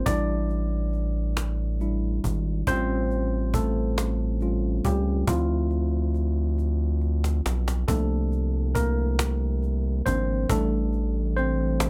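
Slow R&B in 6/8 at 46 BPM, warm and intimate, in a short excerpt cut from a longer piece. A barky, worn tine electric piano, slightly out of tune and heard through a combo amp, carries a solo over chords moving from A7sus4 through A7alt, Dm9 and C7sus4. Beneath it sit a rubbery, hollow square bass with a resonant filter pluck and a snappy cajon in a small room, which takes a fill from 6.6 to 7.9 seconds, all kept up front and nearly dry.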